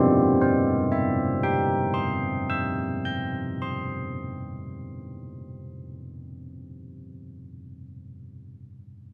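In a straight 3/4 at 64 BPM, this short classical tune for church bells moves at an unhurried, stately pace in C major, tuned to A4 = 442 Hz. Carillon bells carry the whole fragment as a solo from 0.0 to 6.6 s, ranging from C4 up to G6 over a C chord. Their tone is bronze and full, with a distinctive minor-third overtone and the softened attack of a padded clapper. Close, detailed microphones keep the bells up front and ringing, set within a moderate recital hall reverb of about 1.4 s. Cut from a longer piece, the passage feels serene and festive.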